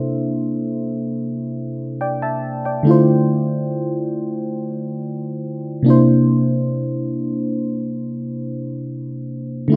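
In free time, this late-night, moody R&B excerpt features a lone mellow FM electric piano, round and warbling with a dark chorus shimmer and a noise layer, sitting up front in moderate studio reverb across a rough home-demo mix as it moves from C9 to Dm9 at 2.9 seconds and back to C9 at 5.9 seconds, tuned slightly flat to A4 = 439 Hz.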